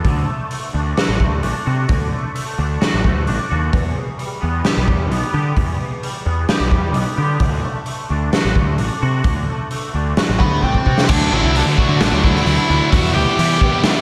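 A straight 4/4 pulse at 130 BPM drives this cathartic, bittersweet quiet-loud alternative rock excerpt: a gritty garage drum kit and punchy fuzz bass sit up front beneath clean, twangy fingered guitar arpeggios with chorus and slapback echo over D and Em chords, a dark octave-fuzz lead melody enters at 10.4 seconds, and after a drum fill two distorted riff guitars, one bright and high-gain and one sludgy and overdriven, join in the background at 11.1 seconds, all within a big arena sound bathed in lush hall reverb.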